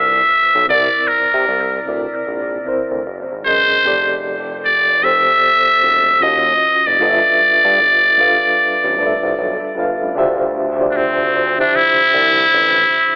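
A trumpet with a metal mute leads this short late-night neo-soul and R&B excerpt, its buzzy, raspy tone sitting up front as it carries the melody from C4 to E5 and trails off into dub echo. Beneath it, a mellow reed electric piano supplies reedy chords shimmering with fast tremolo and its own dub echo, moving through rich harmony from G7sus4 and C9 to F#69, Ebm9 and G13 before settling on Dm11 at 10.2 seconds, where a new section begins. A smooth synth bass anchors the low end from E1 to C3, its warm, sustained notes carrying a touch of vibrato, and it drops out at 12.8 seconds while the trumpet and piano continue to the end. The tempo is an unhurried 76 BPM in 4/4, with a lazy swing on the sixteenths that keeps the introspective mood loose and relaxed. The whole mix is soaked in echo and filtered through a narrow telephone-like sound, with light reverb and a hint of studio ambience giving it a hazy, intimate feel.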